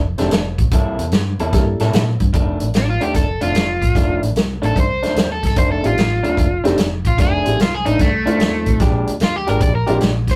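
Laid-back and gritty, this is an electric blues shuffle in F mixolydian at 149 BPM, with a swung 4/4 feel and a rough rehearsal-room sound under light reverb, cut from a longer piece. A vintage drum kit sits up front with hi-hat, a punchy kick and a medium-tuned snare, while a dark, round, foam-muted fingered electric bass carries the low end. An electric guitar through a small old amp plays a compressed, slightly broken-up riff throughout, and a woody, slightly detuned upright piano adds accompaniment in two stretches, dropping out after 1.8 seconds and returning at 5.8 seconds. From 2.8 seconds a bright, crunchy overdriven guitar takes the melody up front as a solo, reaching up to D5. The harmony moves through F13 and C13 before settling back on F13 and shifting to Bb13 at 8.8 seconds.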